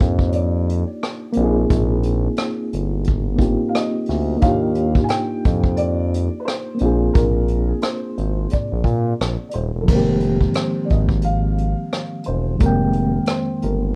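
A hazy, reflective lo-fi hip hop passage, cut from a longer piece, opens with everything sounding at once: a soft, thick-felt upright piano carrying the melody, a reedy electric piano with fast tremolo playing accompaniment through its built-in speakers, a smooth synth bass, and a brushed drum kit. The drums have a natural small-room sound, with a tight kick, rim click, hi-hat and crash, their top rolled off and placed up front, all over a lazy sixteenth-note swing. The bass blends sawtooth, square and triangle tones into a nasal, detuned voice with vibrato and a fast attack, sustaining beneath chords that move from Ebmaj9 through Bb7sus4 and Bb7. The muted, boxy, intimate piano sits lower in the mix than the other parts, darkened by a low-pass filter and trailed by tape echo. At 9.9 seconds the harmony settles onto Fm11, and the drums drop out at 13.8 seconds, just before the close. Light reverb and a rough, cassette-tape home-demo quality give the whole a worn character.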